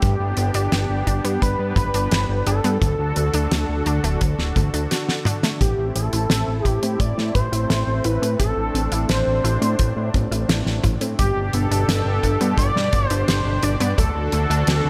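A steady, straight 4/4 groove drives this moody, nostalgic synthwave fragment, cut from a longer piece. A tight, dry, airy kick and a damped 70s drum kit with a fat snare, hi-hat and toms carry a polished studio reverb, with the kit sitting up front, and the kit plays a fill from 4.9 to 5.6 seconds. A thick, saturated analog bass, detuned with a nasal sawtooth and square-wave edge, anchors the chords G, D, Am and G over a lush, bright unison pad that pumps under its sidechain and chorus. In the background a round analog pluck spins chorused arpeggios through tape echo, and a filter sweep runs across it from 5.6 seconds onward. On top, a bold unison lead with vibrato, chorus and delay carries the melody through a small, lightly reverberant room.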